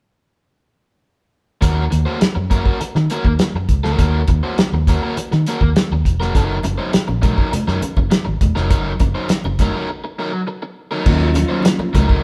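Cool and hypnotic, this funk excerpt moves at 102 BPM in a straight 4/4 feel, centred on Eb dorian and cut from a longer piece. A cloth-damped drum kit sits up front with a thuddy, fat snare, tight kick and dark cymbals across crash, hi-hat, kick and snare, joined by a vintage fingered electric bass that sounds round and foam-muted, and an overdriven semi-hollow guitar playing picked accompaniment, all three starting at 1.6 seconds. The harmony rests on Ebm7 before moving to Gb6, and low-tuned, ringing congas enter in the background at 6.4 seconds, close and dry. After a break from 9.9 to 11.1 seconds, the groove returns to Ebm7 as a mellow tine electric piano adds clean stabs heard through its built-in speakers. The band plays live together in one room, wrapped in a moderate stone-room reverb.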